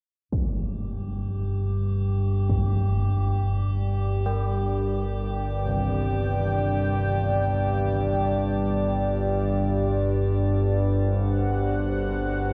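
A sawtooth analog drone sits up front in this dark ambient excerpt, its low pulse-wave tone evolving beneath a desolate, ominous atmosphere in free time. Above it, a deep, moody analog pad holds detuned sustained chords with a sub octave, its slow attack and long release blurring each change. From 0.9 seconds a metallic, inharmonic FM drone hangs on a single high note, nasal and eerie yet mellow, wave-folded and bathed in its own reverb. A huge, bright impact lands in the background at the opening, and from 4.3 seconds old church bells play soft arpeggios in the background, bronze and clangorous with beating overtones, trailed by tape echo. The whole piece sits in a cavernous cathedral reverb with a dulled top end, and the synth drone fades out across the passage.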